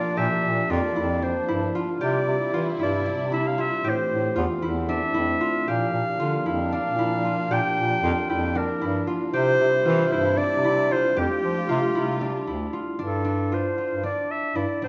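In a straight 7/8 pulse at 229 BPM counted in eighths, this hopeful, shimmering chamber piece, cut from a longer work, sets a clear, up-front clarinet melody over a ringing, fingerpicked concert harp arpeggio and a soft-attacked bass clarinet line, all tuned to A4 = 437 Hz. A dark, woody string section plays lush, bowed sustained chords with vibrato and sul tasto shading until 13.0 s, moving through Bb, C, Am and Fadd9 before the music turns to a G9sus4 for the closing passage. The sound sits in a wet recital hall reverb.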